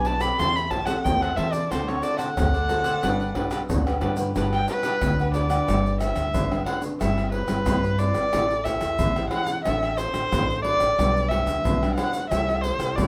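A dark, bowed erhu leads this festive samba-choro excerpt in G major at 91 BPM, taking a solo over the opening 5.7 seconds with a soft attack, vibrato and sliding portamento in a woody tone. A crisp, bright picked cavaquinho accompanies until 5.7 seconds, while a thumb-plucked classical nylon-string guitar with audible finger squeak and a pizzicato upright bass strung with steel support it throughout. Pandeiro, tube shaker, tamborim, agogo bells and a deep surdo drive the joyful 4/4 groove in moderate studio reverb, as the harmony moves through chords such as Gmaj7, Cmaj7/G and D7.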